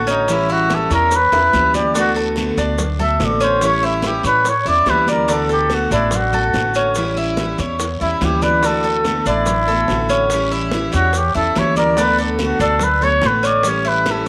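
Warm and danceable, this 14.3-second excerpt of Cuban son and guajira in D major at 144 BPM features an up-front, veiled, breathy cup-muted trumpet soloing with light vibrato and scooped notes over a bright, metallic Cuban tres playing arpeggios, a full-bodied picked steel-string acoustic guitar, and a woody, thumpy pizzicato upright bass, while raspy guiro, grainy maracas, high-tuned congas and tight, very quiet bongos sit in the background, a drum fill arrives at 1.1 seconds, and the chords alternate between A7 and D6 in a small room with moderate spring reverb.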